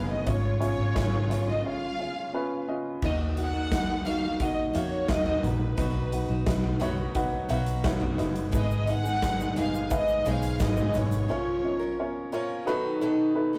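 A lush, up-front violin section carries the melody over a dark, woody upright piano in this driving, earnest piano-driven pop excerpt in Eb minor at 87 BPM, joined by distant portamento strings that stop at 3.0 s, a round foam-muted electric bass, a punchy arena drum kit with bright cymbals, a bright picked acoustic guitar riff with finger squeak entering at 3.0 s, and a mellow French horn section and grainy egg shaker arriving at 8.5 s, all in a rough rehearsal-room sound with saturation and a small-room reverb.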